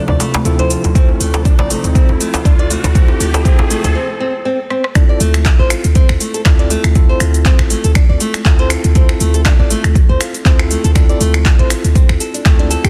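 Spiritual and driving, this afro house excerpt swings its 16ths over a steady four-beat pulse and opens with a build-up in which a riser climbs while drum fills roll beneath it. In this opening stretch, a smooth, detuned sawtooth pad with chorus and 12-bit grit sits in the background, alongside a deep, hard-handed djembe recorded close and dry; both fall away just before a short break at 4.0 seconds. Bright, fingerpicked flamenco guitar arpeggios with audible finger squeak run throughout, darkened by a low-pass filter, roughened with sampler grit and trailed by dub echo. Clean, bell-like electric piano stabs, heard as if through built-in speakers, carry their own dub echo, while a boomy, sine-based 808-style bass with a noise layer and fast, decaying attack pumps against the sidechain. The drop lands at 5.0 seconds, driven by a deep, tape-warm electronic kick up front and an afro-pop kit of metallic hats, snaps, handclaps, rim clicks, shaker and toms, its snare softly clipped, all within light digital ambience and a dense, heavily limited master.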